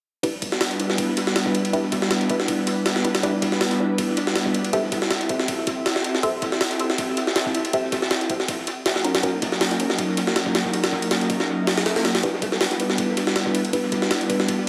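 Dark and nostalgic, this drum and bass and jungle excerpt in E minor runs at 160 BPM with a gentle swing. A gritty, compressed sampler-style jungle kit sits up front with a thumpy kick and a high-tuned snare, while an airy, breathy pad holds sustained chords through Em7, Am7, D#m7 and back to Em7, and a muted, detuned dub chord stab with chorus and dub echo stays in the background. A very quiet electronic swell appears at 11.6 seconds before the stabs return at 12.2 seconds, all bathed in a wet spring reverb and an echo-heavy mix.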